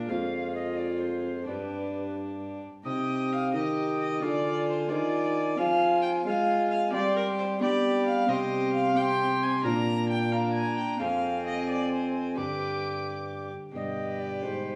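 Rustic and solemn, this renaissance-style consort dance in C minor moves at 88 BPM in a straight 6/8, cut from a longer piece and heard from further back in a wet stone room. A mellow alto recorder with a pure, chiffy attack and vibrato carries the melody from 0.1 seconds, while one gut-string viola plays a second line up front and another, nasal and airy-bowed, sits close in the accompaniment beside a bright, ringing fingerpicked Celtic harp. A dark bassoon with light vibrato anchors the bass through a progression that ends on G.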